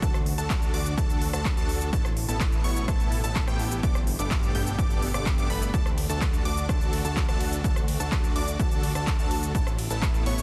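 An overdriven electronic kick drum sits up front and punchy through this 126 BPM festival progressive house excerpt in D major, its layered thump re-recorded in a large room and stopping at 10.1 s. Beside it, a big-room dance drum kit with crisp hats adds handclaps, hi-hat, ride cymbal, rim click and shaker, also overdriven. A huge, bright supersaw riff built from detuned sawtooth voices carries subtle chorus, sidechain pumping and tape echo. Above it, a catchy plucky unison lead plays high arpeggios with a phaser, filter sweep, pumping and echo. A fat, nasal analog bass pumps underneath, while a very quiet, slow-attack pad holds sustained chords. The uplifting, anthemic progression moves through D, Asus2 and Gadd9 in a dense, heavily limited master with little reverb.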